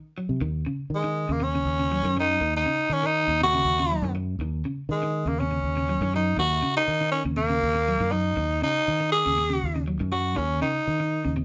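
Afrobeat at 121 BPM in a straight 4/4, this short excerpt sits in Eb dorian and holds on a single Ebm7 chord, building a hypnotic, intense mood. An electric guitar at the edge of break-up opens at 0.2 seconds with picked arpeggios, its slightly broken-up tone sitting low in the mix. A fingered electric bass joins almost at once, dark, round and punchy, with a direct, amped sound. At 0.9 seconds a raspy tenor saxophone takes the solo melody up front, close-miked and gritty, with vibrato and scooped notes giving it an edgy, pop-style delivery. The band plays live in one small room, and a moderate reverb lends the sound a natural sense of space.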